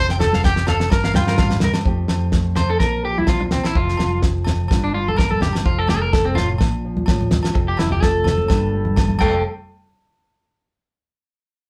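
A twangy, slightly broken-up electric guitar sits up front with picked arpeggios and takes a clean solo from 1.9 s in this carefree, danceable highlife groove at 127 BPM in F major, where a distant trumpet with vibrato and scooped notes carries the melody until 1.6 s over a drum fill on a dry, damped 70s kit with a fat snare and tight kick, while a round, dark fingered bass, a small fingerpicked nylon-string guitar, bright hard-hand congas and ringing agogo bells fill out the sound of a band playing live in one room.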